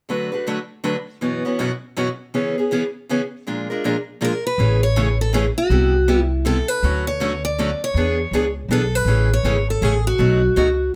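A lightly reverberant sound puts two boxy parlour steel-string guitars and an upright bass up front in this charming, swinging piece of acoustic jazz manouche, taken from a longer performance in a lilting three-beat swing. A picked accompaniment guitar opens alone at 0.1 s, its fresh strings giving a bright edge as it moves through colourful chords such as D6, F#7sus4, C#m7 and Bb7. A second picked guitar takes the melody from 4.2 s, with audible finger squeak adding a lively, handmade touch to its sparkling voice. The pizzicato upright bass joins at 4.6 s as the second section begins, its gut strings giving a woody, thumpy, warm low end. Here the harmony turns through Amaj7, Cmaj7#11, Dmaj7 and E7 before landing on B7 at the cut.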